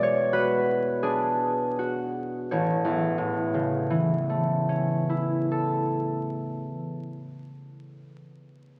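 Moving in a free, rubato three-beat pulse that slows over the first 2.5 seconds, this serene, peaceful classical excerpt features a solo concert harp, fingerpicked and ringing up front with a warm acoustic tone across a range from A1 to E5, drifting from an E13 chord to a resolving A at 2.5 seconds inside a wet church reverb and the crackle of a very old 78 rpm record.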